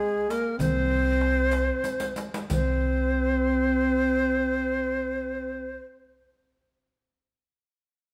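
A breathy, bright ney carries the melody from the first moment, end-blown and tongued with vibrato and sitting up front. Beneath it a mellow duduk plays a second line in a lower register, using scooped notes, a smooth top and a folk style. This short portion of a longer Arabic maqam ensemble piece moves in a straight 6/8 with a hypnotic, soulful mood. At 0.3 s a crisp, small metal-shell darbuka, played with soft hands and kept in the background, enters alongside a riq whose bright jingles are struck with hard hands and sound compressed and saturated. A pizzicato upright bass joins at 0.6 s with woody, thumpy gut strings, and the opening slows down before a drum fill leads into a new section. The percussion stops at 2.8 s, leaving ney, duduk and bass to continue in a moderate recital hall reverb.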